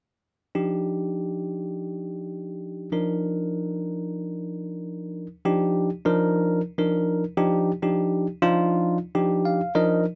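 A dry, close 1970s-style studio sound frames this short, slick and bright jazz cut in a straight 4/4, where a bell-like, clean tine electric piano sits up front with light reverb, voicing an Ebmaj9 as accompaniment from 0.6 seconds before closing with a brief fill at 9.2 seconds.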